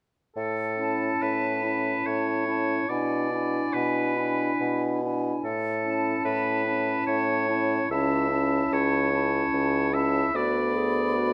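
In a rubato 3/4 at 72 BPM, this slow romantic movement for wind quintet in A major unfolds with a lyrical, serene mood, cut from a longer piece. The oboe and bassoon open at 0.4 seconds: the oboe sits clear and up front on the second line, while the bassoon carries the bass with a warm tone and light vibrato. At 0.8 seconds the concert flute takes the melody between G#5 and B5, pure and bright with tongued notes, vibrato and lifted highs. The French horn and clarinet join at the same moment as accompaniment, the horn mellow and the clarinet distant and set in the background. The harmony moves from A through E7/B, back to A, then A/C#, ending on a rootless E7/D. All five parts play until 11.3 seconds in a moderate recital hall reverb that lends a gentle sense of space.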